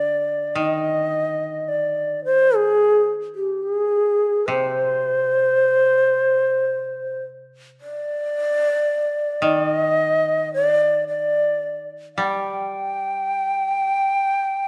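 An airy, end-blown long shakuhachi sings an expressive, straight-toned melody up front with a soft attack, while a woody koto played with fingerpicks keeps a low, dry accompaniment beneath it, and both are heard from the opening in this austere, calm fragment of traditional Japanese chamber music, flowing in free rubato within a moderate recital-hall reverb.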